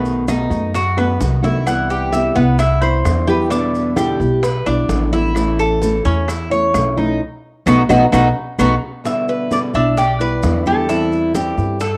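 Nostalgic and homespun, this short cut of Cuban son and guajira rolls along in a straight four-beat feel, with the intimacy of a home cassette recording soaked in a wet spring reverb and small-room ambience. Up front, a picked Cuban tres spins metallic, double-strung arpeggios with some octave-doubled strings, while a fingerpicked nylon-string guitar adds warm accompaniment, finger squeaks audible, and a thumpy, dark pizzicato upright bass anchors the low end. A bright, nasal metal-body resonator slide guitar, played with fingerpicks, carries the melody from 1.7 seconds and returns at 9.1 seconds; it shares a cassette-tape grit with the tres and nylon guitar. Behind them sit very quiet percussion: close, dry congas with a thin skin, tight high-tuned bongos heard at a distance, grainy maracas, and woody claves that drop out at 8.7 seconds. Drum fills and a band accent lead into the repeat of the section, where the harmony settles onto E minor colours.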